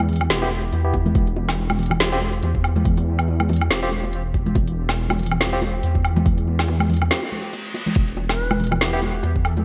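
A half-time deep dubstep groove at 141 BPM rolls forward with a 57% swing on the sixteenths, dark and brooding in mood, set in E phrygian and cut from a longer piece. A rumbling, detuned sawtooth bass sits up front from the start, joined by a deep house drum kit with a woody snare, smooth hats, woodblock and gated reverb, and by close, dry congas and bongos played with soft hands. A layered electronic kick enters at 0.9 seconds. A barky, clean tine electric piano adds stabs through a combo amp, with a low-pass filter sweep and dub echo, and its Em harmony gives way to an open, chordless stretch. A short break arrives at 7.1 seconds, marked by an electronic reverse cymbal, and at 8.3 seconds a distant, airy shakuhachi with vibrato and chiff enters in the background, trailing dub echo, all framed by light digital ambience and a bright 1980s-style production.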